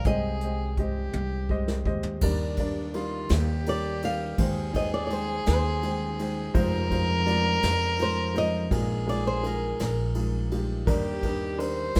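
A 6/8 pulse with a straight feel carries this hopeful, tender acoustic folk-pop ballad, heard as a short cut from a longer piece. A fingerpicked flamenco guitar sings the melody until about 10.6 seconds, while a reedy, gut-strung violin with light vibrato bows a second line beneath it in a period style. A mellow baby grand piano fills out the harmony, and a woody, thumpy pizzicato upright bass anchors the low end. Soft brushes on a small-room kit with a tight kick keep time, and a drum fill from 1.1 to 2.2 seconds leads into the longer second section. The chords open on Abmaj7/C, then move from Ebmaj7 through Abmaj7/Eb, Fm7 and Bb7sus4 before settling back on Ebmaj7, all in a dry, intimate sound with little reverb.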